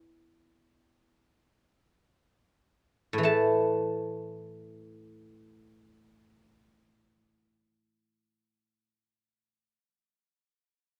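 Chinese traditional solo plucked-string music in free time, this short passage from a longer piece has a flowing, pastoral mood. A lone guzheng, played with fingerpicks and placed up front, spans A2 to A5 with a silvery, ringing tone that stays mellow, heard through close, detailed microphones and light reverb. The opening slows down over its first 3.3 seconds before a new section begins and carries on until 8.7 seconds.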